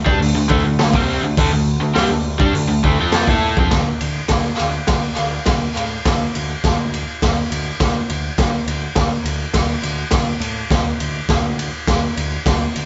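The recording has the sound of a band playing live in one room, with light reverb and a top end that stops at 7.8 kHz. This is a raw, rowdy garage rock excerpt at 103 BPM in a straight 4/4, cut from a longer piece. A bright, double-tracked overdriven electric guitar opens up front with a picked riff over a D5 chord, and it drops out at 3.7 seconds. Beneath it, a growling picked electric bass with overdrive holds the low end through to 12.9 seconds. The drum kit, entering at 0.1 seconds, sounds saturated and gritty, with a punchy kick, a medium-tuned snare, hi-hat and ride, all sitting mid-forward in a small room. Once the guitar falls away, the harmony clears out and bass and drums carry the second section alone.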